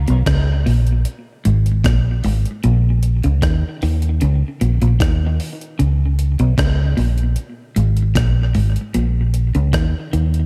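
A straight 4/4 dub reggae groove with a deep, spacious mood, this short cut from a longer piece sets a round, dark, foam-muted fingered electric bass up front under a gritty, compressed breakbeat kit of thumpy kick, hi-hat and rim click, while a clean, picked electric guitar riff drifts through spring reverb and tape echo over a Bbm and Absus2 progression in an echo-heavy mix.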